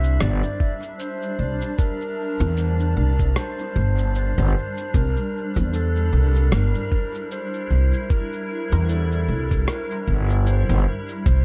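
Peaceful and hazy, this short ambient dub piece, cut from a longer work and set over a dark, swung groove, features a smooth solo clarinet trailing dub echo above a blurred, bright granular cloud pad, a woody pizzicato upright bass and a muffled electronic kick that sit up front, a faint echoing electronic cabasa and rim click, and a very quiet filtered dub chord stab with phaser heard from 2.4 to 8.9 seconds.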